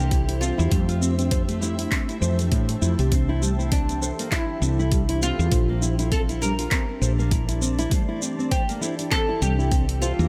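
This peaceful, warm organic downtempo excerpt opens with nearly the whole band at once: a bright, woody oud carries the melody on plectrum-plucked double strings touched with delay, while a thumb-plucked nylon-string guitar with fresh strings spins classical arpeggios through a digital delay. Underneath, a round, dark, hollow-body fretless electric bass sits up front, and an electronic kick drum joins at 0.1 seconds, layered and deep after being re-recorded in a small room. A deep house drum kit adds handclaps, hi-hat and shaker with a gentle swing on the sixteenths. In the background, a clean, fingered electric guitar with compression, ensemble chorus and sidechain pumping plays accompaniment, and a cloudy granular pad of detuned sine and sawtooth tones drifts on slow-attack chords, blurred by its own reverb and pumping as well. The harmony moves between C, Fmaj7 and Bbmaj7, and the mix sits in a digital ambience.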